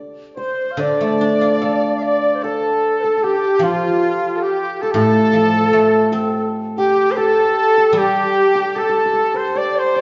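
A trumpet in a bucket mute carries the melody up front, its veiled, mellow tone touched with vibrato and soft attacks in a classical style. This fragment of a longer piece of Chinese traditional chamber music feels graceful and tender, moving with a free, rubato sense of time in 4/4. From the opening, a silvery guzheng played with fingerpicks sits up front with ringing accompaniment in its lower range, while a hammered dulcimer adds a quieter, shimmering second line above. At 0.4 s the trumpet enters alongside a large dizi, whose reedy, airy bamboo voice, buzzing membrane and gentle vibrato double as another second line in the same register as the trumpet. The ensemble is heard from further back in a recital hall with a generous, lingering reverb, and the sound is dulled at the top, giving the whole a soft, distant glow.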